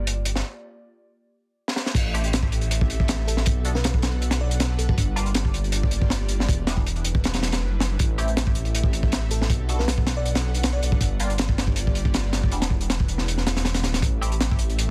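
A dense, heavily limited master with small-room ambience carries this dark, atmospheric drum and bass passage with a jungle feel, cut from a longer piece, where a crunchy, saturated breakbeat kit with a punchy kick and high-tuned snare sits up front beside a rumbling detuned saw bass, a soft, breathy pad with chorus hovers in the background, a nasal band-passed chord stab with phaser and dub echo arrives just after the drop hits at 2.0 seconds, and a sparkling, bell-like FM electric piano melody with chorus and dub echo surfaces briefly at 3.3 and 9.3 seconds.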